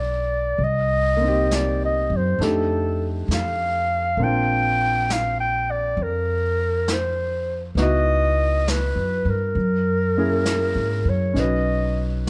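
Jazz ballad at a slow 67 BPM with a late-night, romantic mood, built on a gentle eighth-note swing in this brief excerpt. A dark, up-front clarinet carries the melody in a subtone with vibrato and a plate reverb sheen, over a natural-sounding baby grand piano, a woody, growly pizzicato upright bass, and a brushed drum kit that enters at 0.6 seconds with a soft, rolled-off snare and hi-hat. The harmony drifts from Cm7 and F13 to Bbadd9, then shifts through C#m11 and F#9 before settling on Badd9, all in a light reverb.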